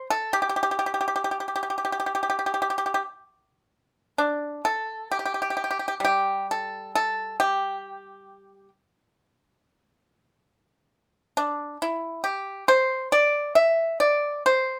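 A bright, percussive pipa played with fingerpicks sits dry and up front in this serene, pastoral excerpt of Chinese traditional solo plucked-string music, unfolding alone in a free rubato around 58-69 BPM in the G zhi mode, ranging from G3 to E5 in a moderate studio room and shifting into a new section at 4.2 seconds before the cut at 14.8 seconds.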